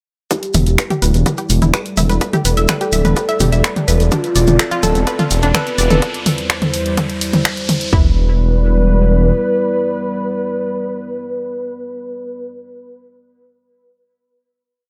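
Dark and driving, this short melodic techno piece in E phrygian moves at 126 BPM in a straight 4/4, building from 0.3 s to 7.9 s over Em7, Dm7 and C/E chords while a riser enters at 3.5 s and filter sweeps move across both the arpeggiated unison pluck and the fat, wave-folded analog lead with its lush chorus and tape echo. Underneath, an overdriven house kit lays down a four-on-the-floor kick with floor toms, a punchy, tape-warm drum machine adds programmed hats, snaps and toms, a grainy shekere plays hand-played sixteenths in the background, and an up-front, rumbling detuned saw bass gallops in sixteenths, with the pluck's dub echo and sidechain pumping breathing through the synth parts. At 7.9 s the drums drop away and the piece settles on a final Em7 held by the moody, slow-attack pad and the lead, with the bass lingering briefly, all in an echo-heavy mix with light reverb.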